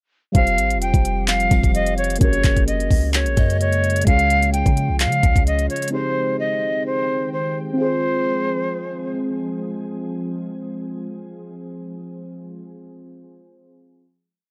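A bouncy half-time trap beat at 129 BPM, with a knocking kick, crisp sixteenth-note hi-hats, fast rolls and handclaps, drives this dark, menacing F minor hip hop piece: a deep, boomy 808-style bass follows the kick with long sliding sub notes, an airy, vibrato-laden jazz flute loops the filtered, tape-echoed melody up front, muted felt-like synth keys hold close-voiced chords, a glassy, ethereal FM pad swells in with chorus and reverb, and a breathy pan flute adds a sparse, echoing counter-melody in the background. The bass and drums fall away between 5.7 and 5.9 seconds, leaving the flute, keys and pad to settle onto a final F minor chord from 7.8 seconds, all captured in a dry, gritty sound with transformer saturation.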